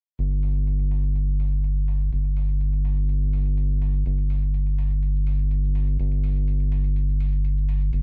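At 0.2 seconds a round analog bass and a softly layered electronic hi-hat and cabasa come in together, setting a dreamy, bittersweet progressive house groove at 124 BPM in a straight 4/4. The bass sits up front and reaches down to G1, a deep, mellow tone built from square and sine waves with a wave-folded, evolving character, a fast attack and long sustain. The hi-hat and cabasa sit far lower in the mix, their dark, produced sound shaped by low-pass filtering and re-recorded in a small room that is filtered in the same way. Both parts play through to 8.0 seconds in this short section cut from a longer piece, and the overall sound is dry, with little reverb.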